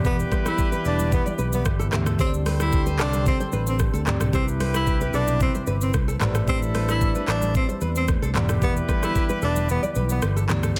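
This short cut from a longer piece has a dense, heavily limited modern sound with little reverb. It is a hypnotic, sultry afrobeats groove at 112 BPM in 4/4 with a straight feel, set in E minor and moving through Em7, D7sus4, Cmaj7 and Am11 before returning to Em7. Up front, an electronic afro-pop drum kit re-recorded in a large room drives the track with a knocking kick, metallic hi-hat, handclaps, rim clicks, shaker and toms, its snare softly clipped. A punchy, amped fingered electric bass holds the low end, while very quiet congas with a thin skin sit close and dry beneath. A breathy, close-miked tenor saxophone carries the jazz-style solo melody with scooped notes and tape echo, and a distant, roomy horn section with light vibrato and tape echo adds a second line. In the background, a bell-like tine electric piano plays clean accompaniment, a fingerpicked classical nylon-string guitar plays a warm riff with tape echo, and a glassy, ethereal FM pad holds slow-attack chords with ensemble chorus. 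The kick drops out at 9.7 seconds, and an up-front electronic downlifter lands at 10.8 seconds.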